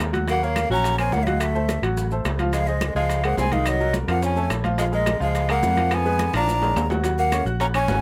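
Close, detailed microphones and a light reverb give this brief cut from a longer Afro-Cuban jazz piece a crisp, intimate sound, driving and sophisticated at 213 BPM in 4/4 with a straight feel in Bb minor. A growly, amped, fingered electric bass sits up front in its low register, with a bright baby grand piano supplying brilliant, short-sustained accompaniment across a broad span of the keyboard. The percussion layers ringing metal-shelled timbales with a vintage, band-limited character, thin-skinned congas and grainy maracas in the background, very quiet, high-tuned bongos heard from a distance in a large room, and woody claves that join at 0.6 seconds. At 0.3 seconds a breathy, straight-toned metal flute with lifted highs takes the melody while a clear tenor saxophone with jazz vibrato weaves a second line beneath it. The harmony moves through rich changes such as Ebm7, D9, Dbmaj7 and Cm7b5, arriving at Fdim and Bb7b13 as a drum fill starts at 5.9 seconds before the return to Ebm7.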